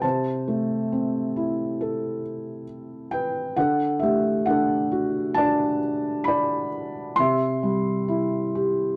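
A felt-muted upright piano opens the recording at 0.0 s, playing alone in a peaceful, tender classical style. Its tone is soft, mellow and intimate, with a vintage character, and it sits up front in the sound, ranging from C3 to C6. The tempo is an unhurried 67 BPM in 4/4, stretched and relaxed by a lyrical rubato feel. The harmony moves from Am/C to D at 3.6 seconds and then settles on C at 7.2 seconds. A light reverb and a dark, warm production frame this brief passage, which is cut from a longer piece and ends at 9.0 seconds.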